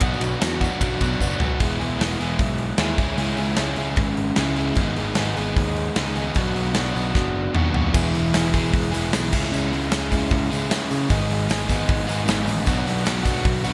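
An overdriven, double-tracked semi-hollow guitar riff sits up front from the start alongside a direct, bright picked electric bass, a polished big rock drum kit with a punchy kick and bright cymbals, and a jingly tambourine tucked in the background that drops out at 1.5 seconds. Drum fills push this upbeat, jangly indie rock passage into each new section as the chords cycle through Bm, E, C#m and G#m, and the tambourine returns at 7.9 seconds for the final stretch. A lush hall reverb and a glossy 1980s-style digital production give the whole passage a spacious, radio-ready sheen.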